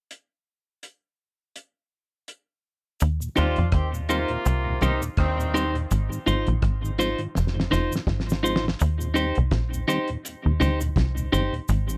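A roots reggae groove with a light 16th-note swing opens on a cloth-damped, thuddy drum kit alone, its fat snare, tight kick, rim click and hi-hat sounding dry and dark with a rolled-off top, up front in the mix. At 3.0 seconds a tight, punchy sequencer bass joins with a sawtooth-and-square filter pluck and fast attack, alongside a close, dry cabasa, as the harmony settles on Eb6 and later moves to Ab6. A mellow, flute-like tonewheel organ with key click sits in the background through a slow rotary speaker and dub echo, while a bright, twangy clean electric guitar, picked and compressed, rides up front with its own dub echo. A distant, roomy horn section adds a brief second line from 3.4 to 5.7 seconds, also touched by dub echo. A drum fill leads into the final stretch as the chords return to Eb6, keeping the sunny, uplifting mood in this short cut from a longer piece under light reverb.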